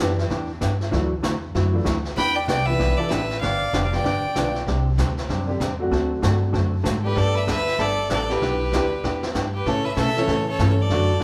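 Two clear, earthy bowed fiddles with light vibrato carry a melody and a close second line at 2.2 seconds, fall away near 4.6 seconds and return around 7.1 seconds in this playful, down-home western swing excerpt from a longer piece. Up front beneath them, a woody pizzicato upright bass anchors the swung groove, while a dark, clean hollow-body jazz guitar and a boxy upright piano sitting in the background fill out the chords. A brushed vintage kit with a punchy kick and a rolled-off top keeps time, and the whole band sounds as if it is playing live together in one large studio room bathed in wet reverb.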